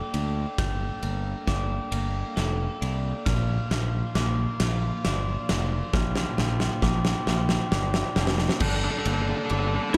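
Post-rock in G minor at 45 BPM in a slow 6/8, tuned to A4 = 435 Hz, this brooding, cinematic passage builds from the opening through a drum fill. A distant woodwind section holds sustained chords while a soft, bell-like glockenspiel and a bright, twangy twelve-string electric guitar trace arpeggios through digital delay, the guitar also touched with subtle chorus. A growling, overdriven fingered bass and a huge arena kit with a fat snare and punchy kick sit up front from 0.1 s over chords moving from Gmadd9 to Bb and back, and at 8.6 s a sludgy distorted guitar enters with a picked riff, all within a dark production with moderate studio reverb.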